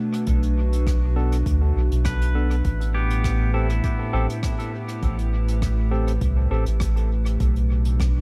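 An echo-heavy, meditative ambient dub excerpt opens with a warbling, lo-fi pad drifting through chorus and reverb over a round, up-front sub bass with tube saturation, a deep electronic kick in the background and brushed jazz drums whose hi-hat and rim clicks trail dub echo, while a barky electric piano through a combo amp adds echoing stabs from 1.2 s and a bright, twangy pedal steel plays fingerpicked slide arpeggios with volume swells from 2.1 s, all over a move between Bm7 and Am7.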